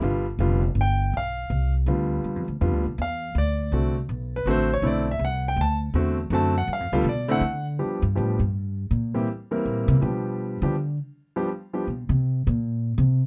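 A sophisticated, swinging jazz waltz in 3/4, this short excerpt from a longer piece pairs a clear, intimate grand piano carrying the melody, its action noise audible, with a woody, dark pizzicato upright bass on steel strings, both placed up front in a close, detailed, nearly dry sound. The piano takes the spotlight first, then at 7.8 seconds the bass steps forward for its own solo while the harmony moves through dominant seventh chords, ending on a Bbsus2 at 12.2 seconds. The piano falls silent at 11.9 seconds, and the bass carries on until 13.2 seconds.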